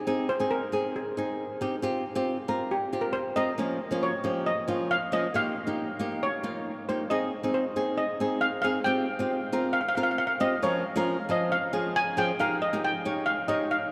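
A fingerpicked flamenco guitar opens this sunny, bouncy calypso fragment at 0.1 s, and a steel pan joins at 0.3 s to carry the melody as a solo through to 13.9 s. The tune moves at 136 BPM in a straight 4/4 in Ab major. The acoustic guitar sits up front with a warm tone and audible finger squeak, supplying the accompaniment. The double seconds pan, struck with hard rubber sticks, rings bright and metallic with a shimmering edge, also placed up front. The chords cycle twice through Ab, Fsus2, Bbm/F and Ebadd9, and the whole passage, cut from a longer piece, is bathed in a cathedral reverb that places it in a vast, echoing space.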